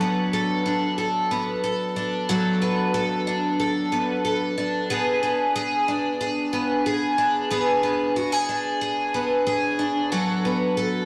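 A straight 4/4 pulse at 92 BPM carries this short, ethereal dream pop fragment in B dorian, cut from a longer piece. A picked twelve-string acoustic guitar plays alone throughout the 11.1 seconds, its bright, octave-doubled tone sitting up front and shimmering through a lush chorus and tape echo. Its range spans F#3 to A4 as the harmony moves from Bm7 to Bm6 at 4.9 seconds and back to Bm7 at 10.1 seconds. A wet recital hall reverb with a 1.5-second decay gives the guitar an auditorium sense of space. The cassette tape recording adds a hazy character to the whole fragment.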